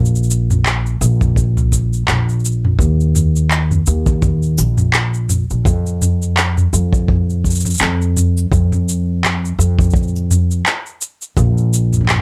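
A woody, pizzicato upright bass opens this short folktronica excerpt, sitting up front and moving in a low register between Bb1 and F2. An organic electronic drum kit joins almost at once, its cabasa, handclaps and toms carrying a tape-warm, produced character, as if re-recorded in a small room, and placed close to the listener. At 1.2 seconds a tight, dark kick drum arrives, saturated and gritty with a rolled-off top, and it drops out at 11.5 seconds while the bass and kit carry on to the end. The sixteenth notes have a gentle swing, giving the groove a relaxed, hopeful lilt in 4/4. The sound is dry and intimate, with little reverb, so the steel-string bass and the textured percussion stay clear and present throughout.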